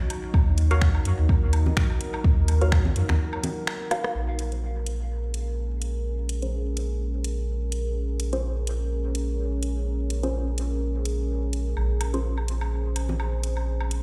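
Heard through a big sound system in a bare stone room, this deep, meditative dub techno excerpt sets a warbling, chorused dark pad and a round, soft sub bass under a muted, phased chord stab on tape, while a dry rhythm box of finger snaps, metallic hats and rim clicks, plus echoing woodblock and congas, play alongside a layered up-front kick that drops out at 2.8 seconds before a break with a drum fill, after which the stab carries a filter sweep from 4.2 seconds as the chords move from Ebm7 to Bbm7.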